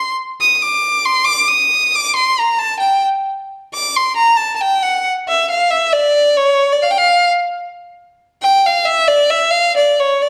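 Balkan folk in free time and C dorian sharp4, this restless, bittersweet passage, cut from a longer piece, features a single bowed violin playing solo across its full 10.3 seconds. The violin sits up front, rich and smooth, with an even tone and vibrato as it moves between C#5 and Eb6, shifting into a new section at 5.3 seconds. A wet recital hall reverb surrounds the violin, and the overall production leans dark and warm.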